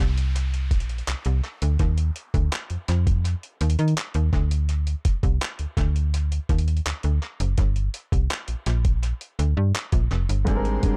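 Smooth and romantic, this contemporary R&B excerpt rides a snappy, metallic slap-like FM bass and a gritty, tape-echoed sampler-style drum kit of thumpy kick, hi-hat and handclaps, with an electronic downlifter in the background through the first 4.7 seconds, before an intimate baby grand piano arrives at 10.4 seconds, followed at 10.5 seconds by fingerpicked nylon-string guitar arpeggios and soft, bowed string chords, all in a small, echo-heavy room.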